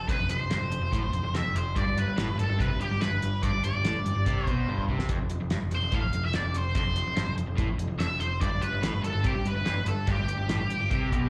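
An up-front octave-fuzz lead guitar, dark and distorted with wah, plate reverb, slapback echo and digital delay, carries the melody through this swaggering, confident classic rock excerpt, heard live through a club's PA. Beneath it, a bright, compressed overdriven electric guitar sits in the background beside a hollow-bodied overdriven semi-hollow guitar with spring reverb, both playing a low riff over F5 and G chords, while a growling, punchy overdriven bass anchors the bottom. A cloth-damped, thuddy drum kit with a fat snare, tight kick and rolled-off top keeps a straight feel and adds a fill at 4.7 seconds.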